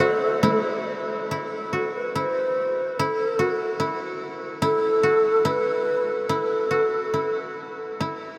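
A huge, wet ambient reverb places this austere, solitary fragment of Japanese traditional chamber music in a vast, echoing space, with a rubato pulse in 2/4 hovering around 67-75 BPM and tuning set to A4 = 436 Hz. Up front, a breathy, mellow bamboo shakuhachi carries the expressive melody with vibrato and a crisp chiff on its attacks, while a dry, woody koto played with fingerpicks adds a close second line. A taiko ensemble struck with hard sticks sounds in the background only from 0.0 to 0.6 seconds; the shakuhachi falls silent at 7.6 seconds and the koto rings on until 8.4 seconds.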